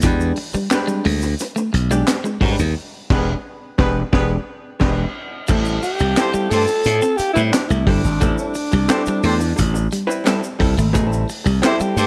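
This hypnotic funk groove at 88 BPM opens on an E7#9 vamp, with a glassy, growly slap bass punching up front over a vintage acoustic drum kit of punchy kick, high-tuned snare, handclaps, hi-hat, crash and dark cymbals. A dark, clean, compressed hollow-body jazz guitar plays picked accompaniment, while a bright, twangy electric guitar, scooped and slightly broken-up, repeats a riff in the background beside a grainy tube shaker. The band hits an accent together, and at 3.1 seconds a distant, roomy horn section with light vibrato adds a second line. The harmony then moves to Am7, and at 5.8 seconds a raspy, gritty alto saxophone steps up front with a growling jazz solo, its tone mellow under the grit and touched with vibrato. Light reverb and studio ambience frame this short cut from a longer piece.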